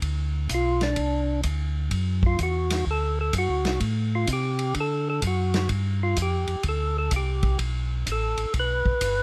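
A dry cut from a greasy, bluesy soul jazz organ trio in D mixolydian at 127 BPM with a swung 4/4 feel, where a round, dark tonewheel organ with key click and slow rotary speaker carries the bass line, a soul drum kit with dark cymbals, a tight kick and a medium-tuned snare keeps time on hi-hat, ride, kick and snare, and from 0.5 seconds a fat, lightly overdriven tonewheel organ with third-harmonic percussion, vibrato and slow rotary solos over the D7, Am7, D and G7 changes.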